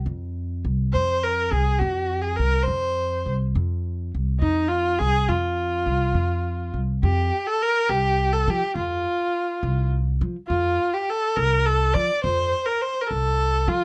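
A woody, thumpy upright bass opens this stately Persian modal piece, plucked on steel strings with a dark, acoustic tone that sits up front in the sound. At 0.9 s a single bowed kamancheh enters with the melody, its clear voice shaped by vibrato and portamento across an even, smooth line. The two parts move in 6/8 with a straight feel, giving the ensemble a warm, dignified character. The first section stays in dastgah shur, and at 7.0 s the music shifts into dastgah mahur for a second section while both instruments carry on together. A light reverb surrounds the pair, and the recording ends at 13.8 s as a short cut from a longer piece.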